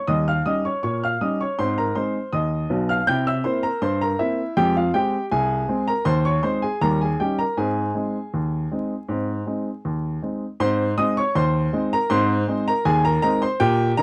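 A clear, woody upright piano carries this short ragtime piece alone, sitting up front with a natural tone from its deep low register to its bright upper reaches. The mood is jaunty and lively, moving at a moderate 80 BPM in a straight 2/4 in A-flat major. The harmony turns through dominant sevenths and a minor chord before settling home on A-flat at 7.6 seconds. After the opening strain, a new section begins at 10.6 seconds and runs to the close of this fragment, which is cut from a longer piece. The sound is dry and close, like a 1970s studio recording, with vinyl crackle adding a vintage grain.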